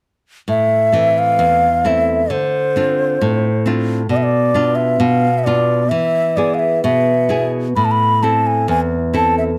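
Longing and passionate, this short fragment of a fado-style ballad moves with a rubato feel over a 2/4 metre. A mellow bansuri carries the melody from 0.5 seconds, its airy bamboo tone shaded with vibrato, a crisp attack and lifted highs, sitting up front in the mix. Beneath it, a nylon-string guitar provides fingerpicked classical accompaniment, its acoustic sound catching the occasional finger squeak and also placed up front until it rings out at 9.6 seconds. The harmony moves from Am through Dm7, Bdim and E before settling back on Am. Close, detailed microphones and a light touch of reverb keep both instruments intimate and clear, and the passage itself is cut from a longer piece.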